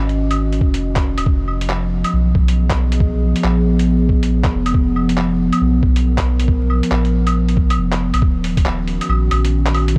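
A warbling, nostalgic pad with 12-bit sampler grit and sidechain pumping holds dark sustained chords over a deep, round dub sub bass, while a muffled, pitched-down lo-fi kit of claves, handclaps and hi-hat swings beside a thumpy kick that drops out from 7.8 to 8.2 seconds, all set in a ghostly, rainy future garage excerpt soaked in huge ambient reverb and vinyl crackle.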